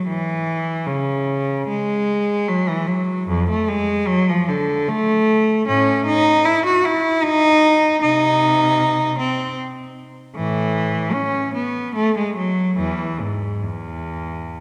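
A resonant concert hall or church surrounds this brief passage, its wet reverb lingering for about 2.4 seconds after each phrase, while the solo cello sits close and up front. It is a serene, radiant baroque-style suite movement for unaccompanied cello in 3/4 at 76 BPM, taken from a longer piece. The beats are uneven, and the rubato gives the line a breathing, unhurried feel. A single bowed cello plays throughout the 14.6 seconds, its rich, smooth, even tone carrying vibrato across a range from E2 up to F#4. The music begins in A major and moves to E major from 5.7 seconds, with the instrument tuned slightly below standard pitch at A4 = 438 Hz.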